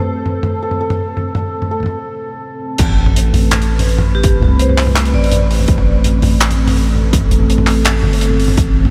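A half-time drum and bass groove drives this heavy, tense piece. It opens on a deep, moody pad of detuned sawtooth chords, warbling with chorus and pumping against the sidechain, while a mellow, shimmering santur plays hammered arpeggios through analog delay. A dark, smooth soul drum kit of toms, hi-hat, handclaps and a crash soon joins, with filter sweeps on the drums and santur leading into a brief break. The drop lands at 2.8 seconds, when a long, sine-toned 808-style bass with tube saturation comes in up front alongside a produced, heavy electronic kick as the harmony moves to Amadd9. At 4.1 seconds a bright, metallic vibraphone struck with hard mallets adds a short melody in the background, ringing into a diffuse ambient delay, and the santur stops soon after. The mix is dreamy and soaked in a huge ambient reverb.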